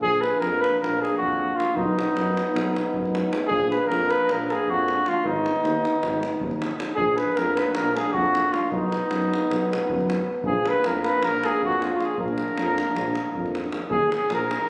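Set in a straight 9/8 that drives with fiery, bittersweet Balkan brass-band energy, this clip from a longer piece puts a mellow, roomy cornet melody up front over a clear euphonium and a French horn with a smooth top, both in light vibrato, while a warm tuba holds the bass and a deep davul sounds from a distant, large room. At 7.0 seconds a punchy, very quiet flugelhorn joins with a second line in the cornet's range, as the harmony moves between Bb, B and Abm. The whole band sounds as if caught on a phone in the room, with compression and a concert-hall reverb.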